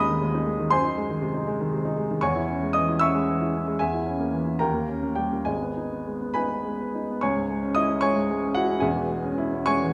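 A solo baby grand piano opens the recording on a G-sharp minor chord, its tone warm, natural and placed up front, tuned slightly low to A4 = 439 Hz. This is a stormy, passionate classical piano study in 6/8, moving at roughly 68-80 BPM counted in dotted quarters, with a rubato feel that lets the pulse stretch and push. The writing spans the keyboard from a deep E1 up to E6, and the harmony passes through C-sharp minor and a half-diminished chord to a dominant D-sharp seventh before settling back on G-sharp minor. At 7.2 seconds a new section turns toward C-sharp minor, which carries the music to the cut at 9.9 seconds, since this is taken from a longer piece. A wet recital hall reverb with a 1.4-second decay surrounds the instrument, giving the virtuoso study a resonant, concert-room bloom.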